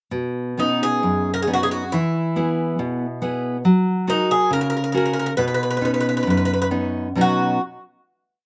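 Fado in B major at 69 BPM in a rubato 2/4, this brief, nostalgic and tender piece pairs a fingerpicked nylon-string guitar, full-bodied with fresh strings and audible finger squeak, playing oompah bass notes and chord figures from 0.1 seconds, with a picked, metallic, double-strung Irish bouzouki that enters at 0.6 seconds carrying a motif-based melody in sentence phrases touched by slapback echo, both up front in a dry outdoor sound moving from Badd9 through E and F#add9 back to Badd9 before a final chord rings from 7.2 seconds.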